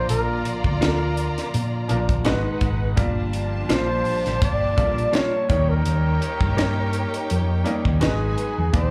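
Heard through a club's PA with the room's ambience and a light reverb around it, this short cut from a longer piece captures a live gig of lush 1970s-style soul, bittersweet and silky, at 83 BPM in 4/4 with a gentle sixteenth-note swing in G minor. A breathy flugelhorn carries the melody in an intimate, whispered pop style, with soft attacks, scooped notes and vibrato, touched by slapback echo. Beneath it, a studio violin section adds an expressive, bowed second line with its own vibrato and slapback, while a reedy chamber string section with gut-string tone holds sustained chords further back. A clear baby grand piano plays accompaniment in the background. Up front, a round, dark hollow-body fingered bass and a polished, dry funk kit with a high-tuned snare and tight kick anchor the groove, and a mellow, compressed electric guitar enters at 0.8 s with a clean riff, echoed, until 8.2 s. 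The harmony moves from Bb through Abm7 and Gm7 to Eb7 before returning to Abm7.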